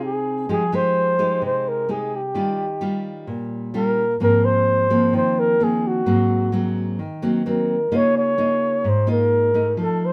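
Bossa nova in F minor at 129 BPM, this melancholic excerpt from a longer piece puts a breathy flugelhorn up front on the melody, its dark, whispered tone carrying vibrato, a soft attack and a smooth top in an intimate jazz-style solo. A fingerpicked nylon-string guitar, also up front, accompanies with a warm, classical, acoustic sound from fresh strings, moving through Fm9, Eb9, Ab69, Ab9 and Db69. Both parts play throughout the 10.1 seconds in a moderate studio reverb.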